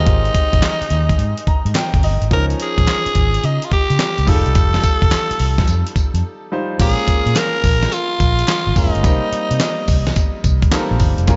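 New jack swing R&B at 107 BPM in Bb dorian with a bouncy, confident swung groove, where a raspy, vibrato-laden tenor saxophone carries the melody up front with slapback echo over a bright grand piano that also takes a fill at 1.2 seconds, a round, foam-muted electric bass, a dusty sampler-style drum kit with a thumpy kick, fat snare, handclaps, tambourine and 12-bit grit, and a barely audible group handclap, all set in light reverb with a break at 6.2 seconds before the chords shift from Abmaj9, Db69 and F9 to Bbm7 and Cm7 in this short cut from a longer piece.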